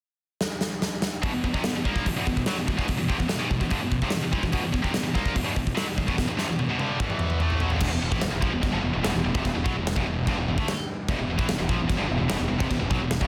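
A dense, heavily limited modern mix with light reverb frames this heavy, aggressive metal excerpt at 146 BPM in E phrygian, where a big-room acoustic drum kit with a punchy kick, medium-tuned snare, china and crash cymbals opens with a fill at 0.4 seconds, a bright, double-tracked high-gain guitar riff enters on E5 at 1.2 seconds, and after another fill a growly fuzz bass joins at 7.8 seconds.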